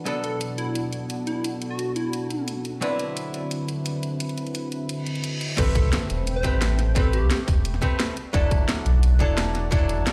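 A lush, detuned pad with chorus and sidechain pumping opens this dreamy, melancholic liquid drum and bass passage. It is joined almost at once by a dark, clean hollow-body guitar through digital delay, an overdriven kit with cracking snare and bright hats, and a punchy, catchy square-wave lead that plays its melody in two short phrases. A reverse cymbal from 5.0 seconds leads into the drop at 5.6 seconds, where a background impact lands, a tight overdriven electronic kick and a round, up-front sine sub bass arrive, the lead returns, and the chords move from Bm7 and D13 to Am9 and E9sus4, all set in a large, reverberant room with lossy compression artefacts.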